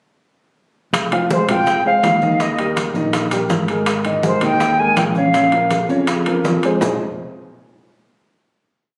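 A straight four-beat salsa groove drives this short, passionate and fiery piece: a round, dark fingered electric bass plays a tumbao that anticipates the chords, while ringing low-tuned congas with slaps and open strokes, tight high-tuned bongos in steady eighths with hand bell, metal-shelled timbales on shell pattern and bell, and grainy maracas all begin at 0.9 seconds. A woody, slightly detuned upright piano sits up front with a montuno in octaves, and a pure silver concert flute with vibrato and tongued notes carries an expressive, motif-based song melody over the vamp before the band settles on a final chord at 6.8 seconds. The sound is compressed and wet with club reverb, captured on a phone in the room.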